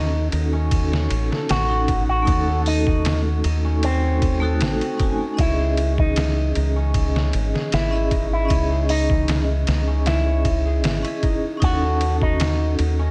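A deep, round and punchy fingered electric bass sits up front in this brooding, hypnotic trip hop excerpt, holding down the low end from the first second. A sampler-style drum kit enters at 0.3 seconds, compressed and pitched down, with a muffled, thumpy kick, a medium-tuned snare, hi-hat and ride cymbal, all bathed in studio reverb and given a lightly swung feel. Above them, a bright, twangy electric guitar carries the melody through an envelope filter, roughened by vintage 12-bit sampler grit and trailed by tape echo. A metallic vibraphone struck with medium hard mallets supplies accompaniment with a slow motor vibrato, tremolo and its own tape echo. Further back, a fingerpicked concert harp plays ringing arpeggios through digital delay, while a digital ambience wraps the whole scene as the harmony moves from D#m7b5 to C#madd9 at 5.4 seconds and returns to D#m7b5 at 11.6 seconds.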